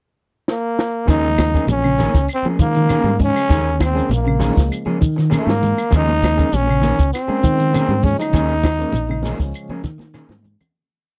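A straight 4/4 afrobeat groove at 99 BPM opens at 0.5 seconds with a drum fill from the compact cocktail kit, its tight kick and high-tuned snare dry and up front, as the growling trombone enters alongside it, before most of the band settles on Eb7sus4 at 1.1 seconds. A raspy, growling trombone carries hook phrases with vibrato over a round, syncopated fingered bass riff, while two slightly broken-up electric guitars, one playing phaser-tinged arpeggio ostinatos in the background and the other funk-strummed upper chord stabs, sit alongside a very quiet, barky overdriven tine electric piano with fast tremolo and rootless syncopated stabs. Grainy shekere, then from 1.4 seconds woody claves tapping a five-stroke time line and very quiet damped congas, fill out this driving, hypnotic piece, which has the close, dry feel of a 1970s studio with light reverb and fades out from 8.3 seconds.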